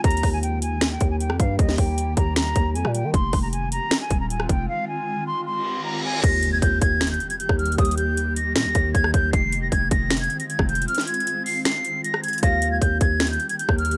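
Trap hip hop cut from a longer piece, triumphant yet wistful at 155 BPM in a half-time 4/4 feel in Eb major, where a breathy, straight-toned silver flute carries the melody through a low-pass filter over a blurred, evolving granular pad with built-in reverb, a growling, buzzy 808-style bass and an overdriven, up-front trap kit of hard-clipped kick, sharp snare, metallic hats, finger snaps, rim clicks and crash, with a break at 4.7 s building through a reverse cymbal into an electronic impact at 6.2 s, the kick muting from 10.9 s, and a brief round, dark octave-layered synth lead touching F5 with chorus, tremolo and tape echo near the end, all in a dry, close mix.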